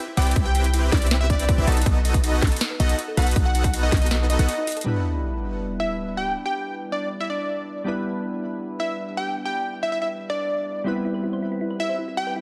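A half-time feel at 160 BPM in 4/4 carries this dreamy, emotional future bass passage in E minor, cut from a longer piece. The opening drop pairs a hard-clipped, overdriven electronic kick and a trap kit with a sharp snare and metallic hats against a deep, boomy 808-style bass and huge, lush supersaw chords under a low-pass filter, the bass and supersaws pumping with the sidechain as the harmony moves from Cmaj7 to B7. A catchy, punchy unison lead, full-bodied and up front with delay, sings the melody throughout, while a round, tine-like thumb-piano-like pluck with chorus, phaser and a cassette tape tint arpeggiates in the background. The kick drops out at 4.1 s, and at 4.9 s an up-front sub drop impact opens a second section on Em7, where glassy digital keys with chorus and delay take over the accompaniment. The pluck returns near the close as the chords shift back to Cmaj7, all set in light reverb within a dense, heavily limited modern master that carries lossy compression artefacts.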